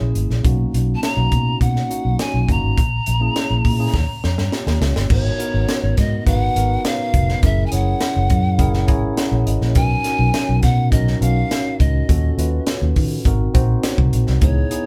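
Polished 1980s jazz-funk pop with a bittersweet, slick mood, where a breathy, hollow bamboo pan flute with vibrato, a soft attack and a touch of chiff carries the melody from 1.0 seconds over a mellow tine electric piano, a dark, round, foam-muted fingered bass sitting up front, and a crisp, gritty fusion drum kit with a high-tuned snare and tight kick, all played live in a small room, with a drum fill at 3.9 seconds and an electric piano fill at 8.6 seconds in this excerpt from a longer piece.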